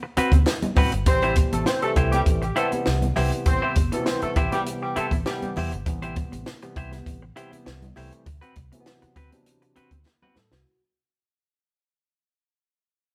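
Funky and hypnotic, this straight 100 BPM funk groove in A dorian is cut from a longer piece and fades out throughout, with a light reverb giving the sound of a band playing live in one room. An up-front cocktail drum kit with a high-tuned snare and tight kick drives it, joined by a dark, foam-muted fingered bass, a bright, clean semi-hollow guitar, thin-skinned congas in the background, very quiet crisp handclaps, and a barky tine electric piano adding stabs through overdrive and phaser. The harmony moves from D6 to Am7 and later to D13, and a mellow vintage horn section with light vibrato plays a second line over the Am7 from 1.1 to 5.5 s. A drum fill arrives at 10.1 s.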